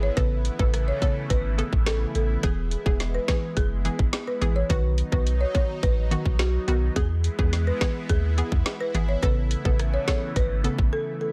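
A straight 4/4 dancehall groove at 106 BPM in E major, driven by an up-front electronic drum kit with a tight kick, woody snare carrying soft clipping, rim click and hi-hats entering at 0.2 s, sets a sunny, bouncy mood. A deep, punchy sine sub bass with a pitch-drop attack sits underneath, while a round, detuned analog pluck with chorus and sidechain pumping supplies accompaniment. A thick, lush unison pad holds sustained chords through chorus, phaser and pumping, and a dry, rustic folk marimba with medium mallets carries the delayed melody across Aadd9, E and B. The marimba and pad ring alone through a brief break from 10.9 s in this dense, heavily limited, nearly reverb-free cut from a longer piece.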